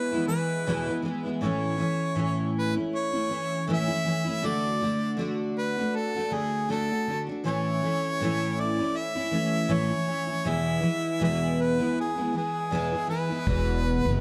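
A clear, close-miked harmonica carries the melody with light vibrato, scooped notes and a touch of delay in this easy-going, heartfelt acoustic pop excerpt, set at 80 BPM in A major with a gentle 16th-note swing. Beneath it, a full-bodied, double-tracked dreadnought steel-string guitar picks out the accompaniment through E, A, D and back. At 13.5 s a woody, thumpy pizzicato upright bass and a tight, dry kick drum join on an Eadd9 chord, all within a dark, warm production with light reverb and small-room ambience.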